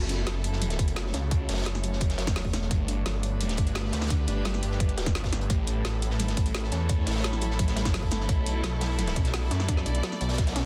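Futuristic and tense, this dark technical drum and bass excerpt runs at 172 BPM in a straight 4/4, moving through F#m, Gadd9, A and Bm in F# phrygian. A snarling, growling distorted saw bass sits up front with overdrive, its detuned sawtooth and square tones carved by a moving notch, while a deep, moody ambient pad with chorus and built-in reverb holds sustained chords in the background. A chamber string section adds intimate bowed texture with light vibrato and a soft sul tasto touch, and a lush, wave-folded unison pluck spins arpeggios through digital delay under a filter sweep, all four pumping against the sidechain. The drums layer a tight electronic kick entering at 0.8 seconds, a produced drum and bass kit with a woody snare and metallic hats, and a gritty, saturated breakbeat kit with a rolled-off top tucked behind them. An electronic swell closes the passage at 10.5 seconds, and the dense, heavily limited master carries only a light reverb.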